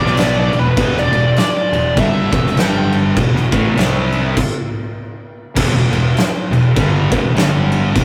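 Brooding and ominous, this excerpt of stoner and doom metal rolls on a swung groove, with two thick, dark fuzz guitars picking the riff in the background over a growly, overdriven fingered bass. A fuzz lead guitar with wah, distortion and delay carries a melody until 2.9 seconds, while an oversized low-tuned drum kit, entering at 0.1 seconds, sits up front and gritty with a fat snare, punchy kick and crash cymbal. After a stop from 4.4 to 5.6 seconds the riff returns, all heard in a rough rehearsal-room recording with saturation and a small room's reverb.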